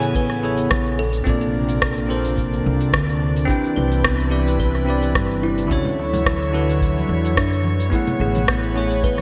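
A bell-like tine electric piano with delay rings out over an airy, breathy pad in this sunny, blissful sunset chillout excerpt, moving through lush major-ninth chords from Amaj9 to Bbmaj9, Cmaj9 and Dmaj9 with a gentle swing. A woody pizzicato upright bass and an up-front smooth R&B kit of metallic hi-hats, rim click and shaker sit over a deep, tape-warm electronic kick, while a dry, close-miked kalimba plays arpeggios with delay in the background. Very quiet, soft-handed congas and bongos join at 5.8 seconds, all wrapped in a lush hall reverb and a bright 1980s-style digital production.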